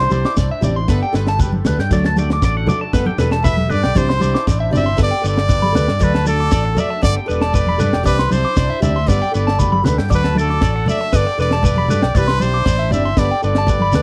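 Highlife guitar band groove at 117 BPM in G major, joyful and sunny, where a clear trumpet with light vibrato carries the melody as a solo through the first 5 seconds over twangy, slightly broken-up electric guitar arpeggios with phaser and tape echo, a bright picked steel-string acoustic guitar, a reedy, sweet accordion holding sustained chords in the background, a round, dark fingered electric bass, ringing congas, a grainy shekere and a tight funk drum kit with a high-tuned snare, all captured in a dry, close 1970s-style studio sound as chords cycle through Cadd9, Gadd9 and D.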